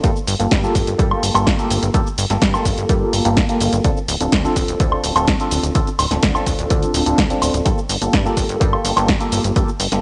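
Filtered disco house in G minor at 126 BPM, this funky, sensual excerpt from a longer piece moves in a straight 4/4 groove. A bright, reedy electric piano carries the chords, Gm9 to Dm7 at 3.8 seconds and back to Gm9 at 7.7 seconds, its clean tone colored by fast tremolo, phaser, sidechain pumping and a cassette-tape sheen. Underneath, a plucky analog bass built from sawtooth and pulse waves uses a fast-attack filter pluck that decays, giving punchy, evolving low notes that also pump with the sidechain. An electronic kick with a punchy, tape-warm thump drives the beat until 9.7 seconds, while an up-front analog drum machine adds a punchy snare, hi-hat, shaker and woodblock, the hats and percussion breathing with sidechain pumping. Light reverb and a home recording on cassette shape the sound of the whole excerpt.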